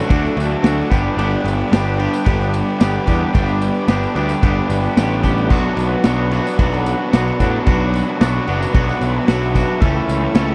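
Indie rock with a jangly, carefree mood, cut from a longer piece and moving in a straight 4/4 over chords of D, G, Bm and A/C#. A crunchy overdriven guitar plays a riff up front, while a bright, twangy electric guitar adds its own clean, picked riff coloured by analog chorus and slapback echo. Underneath, a fuzz-driven electric bass growls with overdrive, joining at 0.1 s alongside a vintage acoustic drum kit that sits forward with a punchy kick, medium-tuned snare, and dark, smooth cymbals heard as crash and ride. A jingly tambourine enters at 0.3 s in the background, and a very quiet analog string pad holds silky, detuned sustained chords with a slow attack, ensemble chorus and vibrato. The sound is dry and close, in the manner of a 1970s studio recording with little reverb.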